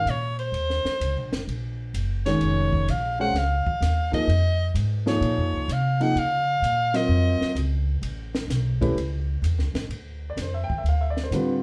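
Heard from further back in a room with moderate studio reverb, this hypnotic, searching modal jazz excerpt swings in 4/4 as a clear, forceful soprano saxophone with vibrato carries the up-front solo melody until 7.6 seconds, over a dark, mellow concert grand piano with deep bass, a woody, thumpy pizzicato upright bass on gut strings, and a quieter compact cocktail kit with a high-tuned snare, punchy kick and rolled-off top playing hi-hat, ride, snare and kick.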